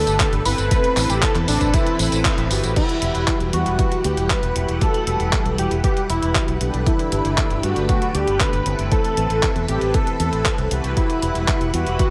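Italo disco with a melodramatic, danceable pull, where a thick, warbling unison lead with cassette-tape grit, delay and shimmer reverb carries the melody over a swirling phased string machine, round synth-brass stabs, a punchy envelope-filtered fingered bass, a sampler-style 12-bit drum machine with handclaps, tambourine, hi-hat and crash, and an overdriven analog kick sitting up front, with a band accent at 2.2 seconds before the second section begins at 2.8 seconds.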